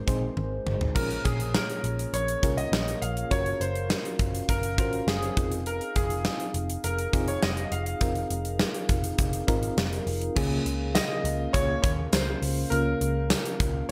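A tight, up-front gated drum kit anchors this glossy, romantic 1980s-style pop excerpt, its tight kick, medium-tuned snare, toms, tambourine, hi-hat and bright cymbals ringing through an airy gated room, with a drum fill from 0.4 to 1.0 seconds. A clear concert grand piano carries the melody, its smooth tone dressed in lush chorus and digital delay. Beneath it, an FM electric piano with tremolo adds mellow accompaniment with a noise layer, while a glass harmonica holds ethereal, slow-blooming chords in the background. A dark, foam-muted electric bass gives a round low end throughout. The harmony moves through Bbm7, Gbmaj7 and Fm7 before settling on Db6 as a new section begins at 10.4 seconds, all framed by a bright, polished digital production with moderate plate reverb.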